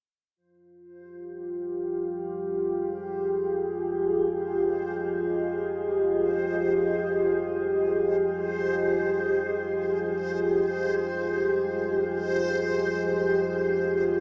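Heard as if through a small speaker in a vast, echoing cathedral space, this ominous dark ambient drone excerpt drifts in free time on an Fmadd9 chord, where a full-bodied, chorused pad holds sustained chords up front with shimmer reverb, a nasal, rumbling low drone from 1.0 seconds moves under a filter sweep, and a reversed, granular, bright texture fades in across the whole passage to 14.2 seconds.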